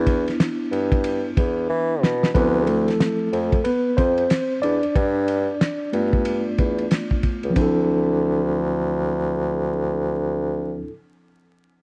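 Jazz-hop with a nocturnal, mellow mood, moving at 92 BPM in 4/4 with a swung sixteenth-note feel in D dorian, this clip is cut from a longer piece. A mellow tine electric piano carries the accompaniment and takes the solo spotlight through the first 7.6 seconds, its clean, direct tone sitting up front over chords that shift from Em7 to Dm9, then G7 and back to Dm9. A bassoon plays the bass line with a warm, soft-attacked, vibrato-tinged classical voice that sits up front in the mix. The cloth-damped drum kit is thuddy and muffled, with a fat snare, tight kick, dark hi-hat and ride cymbals, and a gritty, saturated edge. It plays a fill from 1.7 to 2.3 seconds and drops out at 7.8 seconds. A small room reverb and vinyl crackle frame the dry, close sound of a 1970s-style studio.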